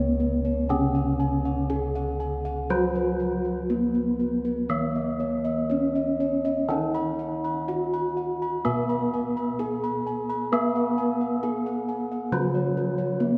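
A straight 4/4 pulse moves at an unhurried 60-70 BPM in this serene, shimmering passage of Javanese gamelan in Db slendro, cut from a longer piece. Two bronze metallophones play throughout the 13.4 seconds. The melody line is struck with padded disc mallets and sounds mellow, soft and airy, its paired tuning producing shimmering beats. The accompaniment below it is played with a wooden mallet, ringing and more up front in the mid-range. Bossed gongs fill out the texture: high arpeggios carry a dark, smooth, round tone, while the bass gongs, hit with padded beaters, sound full and close, with a dry presence. A long, cathedral-like reverb in a church or concert hall gives the ensemble a lingering, spacious glow.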